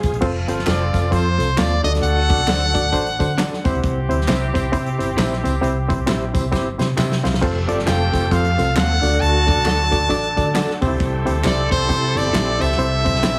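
A brilliant, punchy trumpet leads this driving, passionate slice of uptempo 1960s-style soul, its scooped notes and light vibrato sitting up front with plate reverb and tape echo, first from 0.7 to 3.6 seconds and again from 7.9 seconds on. At 134 BPM in a swung 4/4, a barky reed electric piano with fast tremolo carries the accompaniment, while a dark, foam-muted fingered bass and a tight, natural-sounding drum kit with dark cymbals, crash, hi-hat, kick and snare drive the groove. A tight, vintage horn section plays a jazz-style second line beneath the melody, and a slightly broken-up electric guitar adds compressed stabs in the background, joined by a tube shaker and group handclaps. A shouting, lightly overdriven tonewheel organ with key click and fast rotary speaker holds very quiet sustained chords, returning at 7.4 seconds just after a drum fill and an electric piano fill. The chords move through F, D and C twice, and the whole mix has a heavily compressed radio sound with small room ambience.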